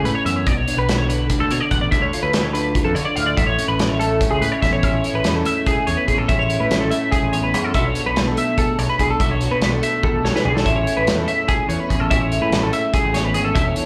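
Heard through a small club's PA with its room reverb, this wistful, intricate math rock and midwest emo passage in 7/8, cut from a longer piece, sets a bright, twangy twelve-string electric guitar accompaniment washed in spring reverb and slapback echo beneath a second clean, compressed twelve-string guitar weaving higher arpeggios through analog chorus, while a growling, overdriven picked bass and an up-front loose indie drum kit with a punchy kick and rolled-off top drive it along, the drums landing a fill at 10.0 seconds as the chords move from Bm7 and Dm toward a glowing Amaj9.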